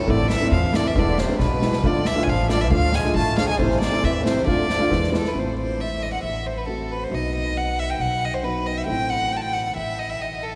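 A rich, intimate violin carries the melody up front in this soulful, bittersweet klezmer passage, cut from a longer piece. It is played by a single bowed player with light vibrato, a soft attack and an airy sul tasto tone. Set at 136 BPM in a straight 2/4, it begins in D dorian sharp4 and moves to A dorian sharp4 at 5.4 s. A clear, vintage trombone plays a jazz-style second line in the background until 5.1 s. A dark, woody upright piano with audible action noise, a boxy character and long sustain supplies the accompaniment, while a pizzicato upright bass with steel strings holds the low end. A polished street-band drum kit with a boomy kick and a medium-tuned snare adds a couple of fills before dropping out at 5.3 s, and the whole ensemble sits in a cathedral-like reverb from a church or concert hall.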